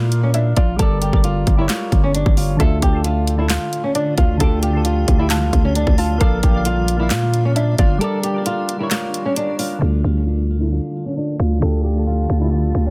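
A growling, buzzy 808-style bass sits up front beneath a trap kit of hard-clipped kick, sharp snare, bright hats and handclaps in this menacing, brooding half-time hip hop fragment, where a dark fingerpicked flamenco guitar carries the melody over soft, round electric-piano-like keys, a warbly lo-fi pluck drifts in the background until 8.0 seconds, a cloudy granular pad enters at 3.7 seconds, and the drums drop out at 9.7 seconds as a filter sweep takes over the dense, heavily limited, dry mix.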